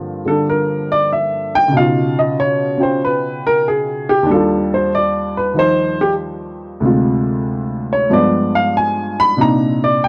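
An upright piano opens this short solo jazz passage alone, its woody, up-front tone setting a smoky, late-night mood from the first second. The playing swings in four, with the eighth notes given a relaxed, lilting feel, and the piano ranges from deep bass notes up into its upper register. The harmony moves through rich jazz chords, from Gm7 and C#9 to a lush Ebmaj9, then turns through Dm7b5 and G7b9 before settling on Cm9 near the close. The sound is dry and close, in the manner of a 1970s studio session, with a light touch of studio reverb around the warm instrument. Cut from a longer piece, the fragment lasts about 10.1 seconds, and the piano is tuned slightly above standard pitch.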